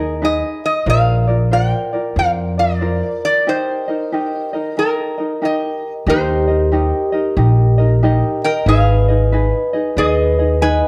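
Hawaiian piece at a relaxed, sunny 92 BPM in Eb major with a swung 4/4 feel, where an up-front metal-body resonator slide guitar, nasal and fingerpicked, carries the melody over fingerpicked tenor ukulele and growly pizzicato upright bass, with a break at 3.5 seconds and a ringing, dry vibraphone with slow motor vibrato joining on a second line at 6.1 seconds, all set in a dark production with a moderate recital hall reverb.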